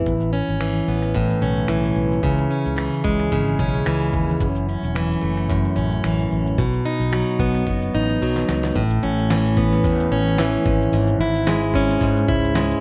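An up-front, full-bodied picked steel-string acoustic guitar strums out the accompaniment in this carefree, easy-going acoustic pop excerpt at 111 BPM with a gentle 16th-note swing, joined by a growly, punchy fretless electric bass and a gritty, compressed soul sampler-style kit of finger snaps, shaker, thumpy kick and fat snare, all moving through Aadd9, C#m, F#m7 and B under light reverb, with a drum fill from 7.7 to 8.8 seconds leading into a new section.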